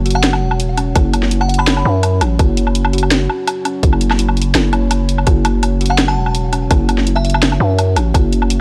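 A half-time drum and bass groove at 167 BPM drives this cinematic, spacious excerpt, where a tight, up-front electronic kick entering at 1.0 seconds and a cracking snare with hi-hat and woodblock sit over a growling, buzzy 808-style bass with tube saturation, while in the background a deep, moody sawtooth pad pumps under sidechain with chorus and built-in reverb, a woody kalimba rings out arpeggios through analog delay, and a glassy, crystalline FM bell plays brief melodic phrases, all captured in a dry, gritty hardware recording.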